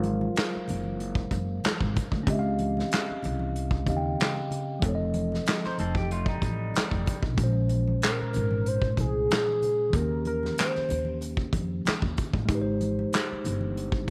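Light reverb and a studio room ambience surround this short, soulful cut from a longer neo-soul R&B piece, which moves with a sensual, slightly swung feel. A mellow tine electric piano, clean through its built-in speakers, carries the rich extended chords throughout, over a woody, thumpy pizzicato upright bass on gut strings. An acoustic drum kit played with bundle sticks sits up front, with a punchy kick, a medium-tuned snare, hi-hat and handclaps, while damped, thick-skinned congas add a very quiet, saturated layer. A hollow, dark square-wave lead with detuned sawtooth colour, chorus, vibrato and slapback echo sings the melody in brief phrases at the opening and again from 8.0 seconds. Around 5.7 seconds, a slightly broken-up, lo-fi picked electric guitar through a small old amp slips in a short second line touched by subtle chorus.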